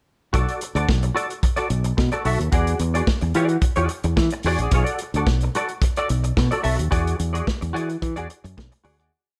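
A bright, punchy fingered electric bass drives this short, glamorous disco piece at 109 BPM in B dorian, playing a syncopated line with chromatic approach notes under a clean, compressed semi-hollow guitar's choppy sixteenth-note chords with ensemble chorus, while a roomy, rolled-off soul drum kit keeps a four-on-the-floor beat with sixteenth-note hats over Bm7 and E9 in light reverb before fading out from 6.9 to 9.1 seconds.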